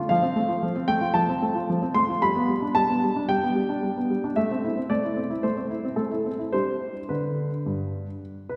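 A wet concert hall with a 2.0-second reverb surrounds this short fragment of a classical-period piano sonatina, heard from further back in the room, while the solo grand piano itself sits up front with a clear, intimate and natural tone and audible action noise. The mood is elegant and graceful, moving at 112 BPM in 4/4 with rubato and uneven beats, and the piano is tuned to A4 = 438 Hz. Spanning G2 to C6, it plays alone from 0.0 to 8.6 seconds over a progression of F, G, Am and back to G.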